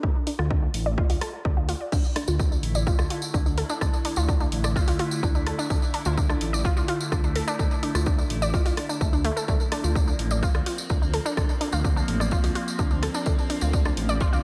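This melodic techno excerpt runs at 127 BPM in a straight 4/4, anchored by a punchy, overdriven electronic kick that sits up front in a large-room sound, joined at 0.3 seconds by a house kit of crash cymbal, hi-hat and rim click with tape-warm hats, and at 1.9 seconds by a jingly acoustic tambourine. In D minor, a detuned sawtooth bass with a filter swell and menacing, saturated edge pumps with sidechain compression beneath a unison pluck playing arpeggios, its lush, wave-folded, ring-modulated tone coloured by cassette tape and tape echo while a filter sweep moves across it for the whole passage. From 2.6 seconds an evolving, morphing wavetable pad adds bright sustained chords with a slow attack, phaser and its own reverb, also pumping with the sidechain. The harmony holds on Dm before shifting to Bbsus2 at 9.5 seconds. The mood is hypnotic and driving, set in light reverb and digital ambience.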